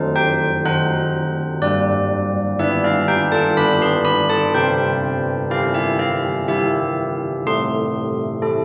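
Old church bells ring out alone from the start, a bronze, clangorous voice with an iron clapper, a minor-third overtone and a beating shimmer, spanning G3 to C6 in a classical tune for church bells. At a stately 62 BPM in 3/4 with a straight feel in C major, the festive yet serene fragment moves from F#dim7 to G at 1.6 seconds, settles on C at 4.5 seconds, then turns to A minor at 7.5 seconds, shortly before it ends at 8.6 seconds. The bells sit up front, set in a wet recital-hall reverb that lingers around 1.6 seconds, as if captured in a church or concert hall.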